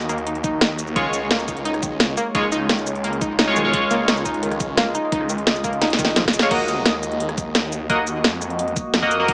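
Dark technical drum and bass at 173 BPM in Eb minor, tense and aggressive, where a snarling, growling detuned saw bass and a deep, moody pad pump under a knocking kick and an up-front kit of cracking snare and metallic hats, while a round analog pluck arpeggiates with tape echo until 6.3 seconds and a nasal, band-passed chord stab with phaser enters at 1.0 seconds over Ebm and Db, with a drum fill at 5.8 seconds leading back into the drop, all heard through a small-speaker sound in a moderate digital room.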